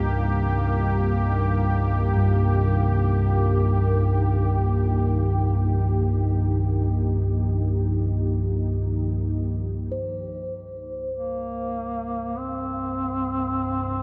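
Unsettling and cavernous, this dark ambient drone in C minor drifts in free time, cut from a longer piece and set in a vast, echoing space. A deep, ominous rumbling drone holds the low end throughout, while a bright, airy sweeping pad with chorus sustains chords and barely audible bronze gamelan-type gongs trace arpeggios until 9.5 seconds, shortly before the pad stops at 9.9 seconds. A pure, close-miked quartz singing bowl then rings with slow beating, and from 11.1 seconds a mellow, vintage duduk carries a folk-style solo melody with vibrato and scooped notes.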